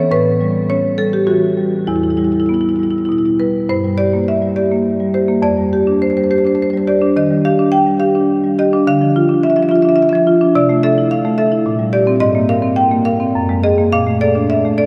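In a rubato 3/4 drifting between 96 and 109 BPM, this reflective, hypnotic contemporary classical piece for solo marimba places woody, percussive rosewood bars struck with medium hard mallets up front across a range from E2 to G5, shifting from E dorian to G dorian at 3.7 s and wandering through colorful extended chords, while a long cathedral reverb sets the playing in a vast, echoing space.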